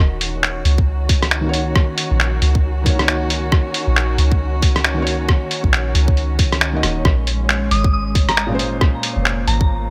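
Future garage at 136 BPM in Eb dorian, this nocturnal, melancholic fragment of a longer piece sets veiled, con sordino chamber strings and a deep, round 808-style bass pumping against a tight, up-front electronic kick, with swung 16ths carried by a muffled, overdriven sampler kit of finger snaps, hi-hat and rim click. A felt-muted upright piano enters at 1.4 seconds with intimate, mellow accompaniment through digital delay, while the harmony moves from Ebm7 to Bbm9 at 7.1 seconds. At 7.7 seconds a pure, warbling FM bell adds a brief high melody with chorus and delay, all framed in light reverb and a bright 1980s-style digital production.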